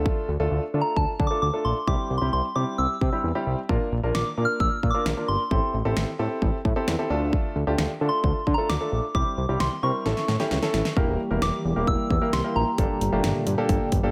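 Synth-pop in D minor at 132 BPM, this short cut from a longer piece has a melancholic, nocturnal mood over a straight 4/4 pulse. A clear, intimate grand piano plays accompaniment, its action noise audible and its short sustain keeping the chords crisp, while a fat, detuned sawtooth bass sits up front beneath it. The pop drum kit sounds electronic and layered, with a punchy kick, fat snare and warm hats carrying a small-room character, and a drum fill arrives at 10.1 seconds. Above it all, a soft synth bell carries the melody with a pure, gentle FM tone, shimmering through chorus and tape echo. At 11.0 seconds the harmony turns from a Dm, C, Bb, Am7 progression toward Edim and Gmadd9 as a brassy, bold analog pad enters in the background, its filter swell, moving notch and vibrato adding mellow depth under light reverb.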